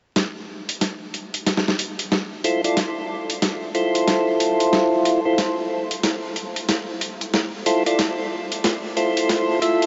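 A dreamy, reverb-soaked mix with vinyl crackle and a vast ambient tail, its top end dulled, frames this short excerpt of gritty, swaggering glitch hop in D minor at 92 BPM, swung on the sixteenths. A compressed, pitched-down boom bap sampler kit of hi-hat and a medium-tuned snare sits up front, high-passed and tape-warm, building through a drum fill across the whole passage. From 2.4 seconds a mellow, round tonewheel organ adds percussive stabs on a rootless Dm9, coloured by slow rotary speaker, 12-bit sampler grit and tape echo.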